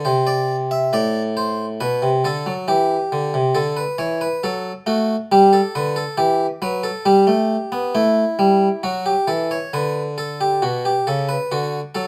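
A bright, airy harpsichord, a single plucked set of strings placed up front, carries this baroque-style two-part invention in G major alone for the full 12.1 seconds, ranging from A2 to E5 in a French manner. The mood is stately and elegant at a measured 68 BPM in straight 4/4, with the harmony moving through D and G before turning to B minor at 10.6 seconds as a new section begins. Light reverb frames this brief passage cut from a longer piece.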